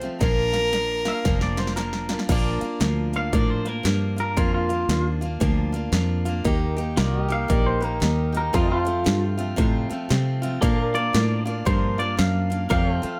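Close, detailed microphones and light reverb frame this sunny, easygoing honky-tonk and classic country excerpt in Bb major at 115 BPM with a swung 4/4 feel, where a woody, bright picked dreadnought acoustic guitar and a round, foam-muted fingered electric bass ride over a punchy, layered electronic dance drum kit with metallic hats, a clear bowed fiddle with light vibrato sounds a single Bb over the opening drum fill, a twangy, compressed electric guitar with tape echo enters at 1.1 seconds and carries the clean solo from 2.3 seconds, and a pedal steel guitar played with fingerpicks adds sustained slide chords with volume swells from 2.3 seconds as the harmony moves from Bb through Eb and F back to Bb.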